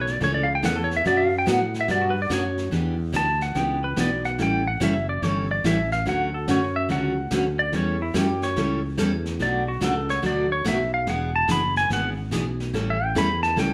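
A twangy, clean lap steel guitar, played with fingerpicks, slide and volume swells, carries the melody up front across this swinging, down-home western swing country excerpt at 144 BPM, over a growly, punchy fretless electric bass, a full-bodied picked dreadnought acoustic guitar, and a distant, roomy brush drum kit, all sounding like a band playing live together in a large studio with moderate reverb.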